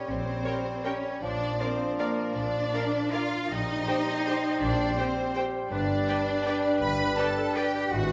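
Festive and sweeping, this short cut from a classical orchestral ballroom waltz moves at 161 BPM in 3/4 with uneven beats and rubato, its chords passing from Bbm69 through Bb and Cm7/Bb to G. A very quiet, rich violin section carries the melody from 0.5 seconds over a smooth second violin line and a soft-attacked clarinet. Beneath them sit a clear bassoon, a lush up-front cello section with bowed double basses as the bass, an intense viola section in the background, mellow distant French horns holding sustained chords, and a ringing fingerpicked harp playing arpeggios, all set in a recital hall's reverb.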